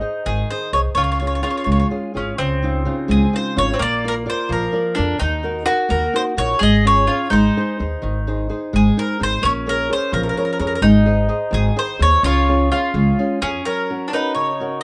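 A bright, woody mandolin carries the melody up front in this sunny, romantic Italian folk serenade in 6/8, its picked double strings ringing over a bowl-back mandolin that plays a quieter second line. A classical nylon-string guitar fingerpicks a warm accompaniment, while a thumpy pizzicato upright bass on gut strings sits close and present from 0.3 seconds until 13.6 seconds, all in a light reverb. The excerpt moves through gentle major and minor chord changes before turning to a new section at 13.7 seconds.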